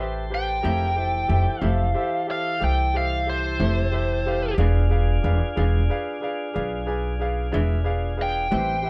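A band playing live in one room, caught with light reverb, opens this brooding, mournful slow blues, cut from a longer piece, in 12/8 at 61 BPM with a straight feel. Up front, a biting lead guitar carries the melody from 0.3 seconds, its picked, overdriven tone sharpened by slapback echo as it solos over the whole passage. The pizzicato upright bass sits close as well, woody with steel strings, while a bright upright piano adds intimate, polished accompaniment with audible action noise. A smooth tonewheel organ holds clean sustained chords with key click through a slow rotary speaker, and an electric guitar through a small old amp, slightly broken-up and compressed with tremolo, joins at 0.6 seconds. The harmony moves from Am7 to Fmaj7 and then to E7b9 at 4.6 seconds, tuned slightly low to A4 = 439 Hz.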